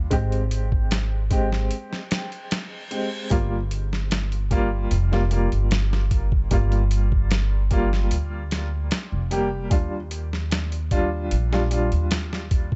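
Trip hop with a smoky, cinematic mood, cut from a longer piece and built on a gritty, compressed, pitched-down boom bap sampler-style drum kit with a thumpy kick, alongside a woody pizzicato upright bass sitting up front. A soft, felt-muted upright piano plays mellow, intimate chords through tremolo and tape echo, moving from Abmaj7 to Gm7 at 3.3 seconds and on to Ebmaj9 at 9.7 seconds. A break begins at 1.7 seconds, and a faint electronic reverse cymbal enters within it at 2.1 seconds, while the production stays dark and warm throughout.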